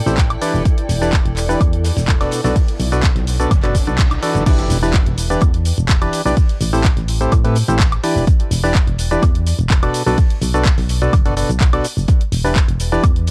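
Energetic and soulful, this piano house cut moves at 126 BPM in a straight 4/4 in E minor, circling through Em7, Bm7 and Am7 chords. A hollow, percussive organ stab carries the riff up front, colored by chorus, tape echo and sidechain pumping, while a round, mellow FM bass with a fast attack pumps underneath. The drums stack an overdriven, punchy electronic kick, a layered house kit with bright hats, handclaps, shaker, woodblock and crash, and a very quiet, dark acoustic soul kit of hi-hat and snare. A cloudy, blurred granular pad drifts in the background for the opening 4.5 seconds, and a faint riser and impact arrive from 2.7 seconds to lead into the drop at 4.5 seconds, which runs to the end. The sound is dry and gritty, with little reverb, and this short portion is cut from a longer piece.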